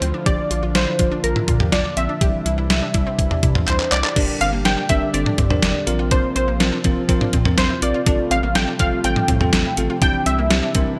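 Bright 1980s-style digital production and a moderate plate reverb frame this wistful yet upbeat synth-pop clip at 123 BPM, built on an overdriven, detuned 8-bit drum machine sitting up front with a thumpy kick, medium-tuned snare, handclaps, hi-hat, toms and crash, plus a drum fill at 3.7 seconds. A punchy, funky polysynth comp carries the melody with chorus and digital delay over a shimmering pulse-width pad holding sustained chords, a round, deep analog bass, and a sawtooth pluck arpeggiating in the background. A bell-like tine electric piano joins as accompaniment at 4.2 seconds, as the chords move from Bb and Cadd9 into Gm, Bbsus2 and Fadd9/A.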